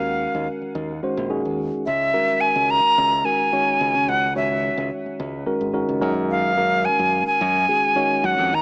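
A straight 4/4 pulse at 108 BPM drives this slick, bright jazz fragment in Gb major, tuned to A4 = 442 Hz and cut from a longer piece. A breathy flute carries the melody between Fb5 and Bb5, its metallic, reedy tone shaped with vibrato and tongued notes and placed up front. Beneath it, a mellow tine electric piano plays clean, warm accompaniment from Eb3 to Db5, also sitting close, while a fingered electric bass adds a direct, modern low end from Ab1 to Db3, lower in the mix. The harmony moves from Ebm9 to Dbm6 at 1.9 seconds and resolves to Gbmaj9 at 6.0 seconds, with all three parts playing through to about 8.6 seconds. A moderate studio reverb and a small-speaker quality give the recording a compact, polished sheen.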